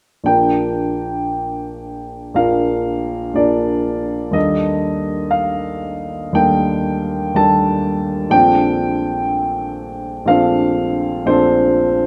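Serene and hazy, this short excerpt of impressionist classical solo piano moves at a slow 60 BPM in 4/4 with a rubato feel, centered in Bb major. A warm baby grand piano plays alone from 0.2 to 12.1 s, spanning Bb1 to A5 with an open tone, long sustain and an up-front presence, drifting through Bb6, Ebmaj7#11 and Bbmaj9 harmonies. A moderate recital hall reverb surrounds the instrument, letting each chord linger in the room.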